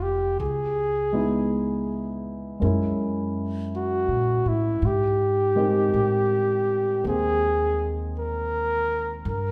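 A mellow, close-miked flugelhorn carries the melody up front in this slow jazz ballad, singing a gentle solo line with a touch of vibrato. Beneath it, a concert grand piano provides warm accompaniment with a deep bass register, while a woody, pizzicato upright bass with steel strings sits up front and anchors the low end. The tempo is an unhurried 54 BPM in 4/4, with a lilting swing on the eighth notes that gives the phrasing a relaxed sway. The harmony moves from Dbm7 through Gb9 to Abmaj9, lending a melancholic yet intimate glow. A recital hall reverb with a 1.6-second tail surrounds the trio, giving it the sense of a church or concert hall. This brief passage of about 9.5 seconds is cut from a longer piece.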